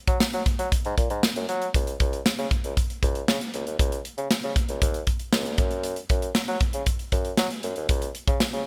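1980s-style pop at 117 BPM in a straight 4/4, this uplifting, nostalgic excerpt pairs a warm bassoon with light vibrato, played in a classical style, carrying the bass line between Db2 and Gb3, with a polished acoustic studio drum kit of hi-hat, punchy kick, medium-tuned snare and tambourine, set in an airy small room and treated with gated reverb. Both parts sit up front within a bright digital 1980s-style production tuned to A4 = 439 Hz.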